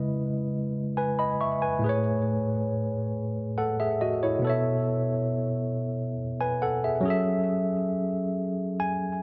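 A moderate echo-chamber reverb surrounds this sultry, late-night R&B fragment, cut from a longer piece and unfolding in a straight 6/8. A worn, slightly out-of-tune tine electric piano plays alone up front, clean yet heard through built-in speakers and trailed by tape echo, moving from C#m9 through Amaj7 and B9sus4 to F#m9. At 8.3 seconds it slips into a short fill that carries to the close at 9.2 seconds.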